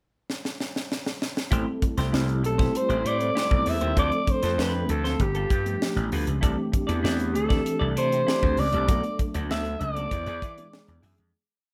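A growling, raspy alto saxophone carries a motif-based pop melody with vibrato and plate reverb from 2.5 seconds, sitting up front in this polished, nocturnal 1980s jazz-funk pop piece with an urban feel. It rides on a crisp fusion drum kit that opens with a fill at 0.3 seconds before settling into a sixteenth-note studio groove with a high-tuned snare and punchy kick. Overdriven slap bass plays an agile syncopated line with chromatic approach notes, a mellow tine electric piano adds syncopated chord stabs with ensemble chorus, and a scooped, hollow-body guitar picks clean sixteenth-note rhythm through lush chorus, all moving from Am7 through Dm7, G9 and C69 before the fade-out from 8.9 seconds.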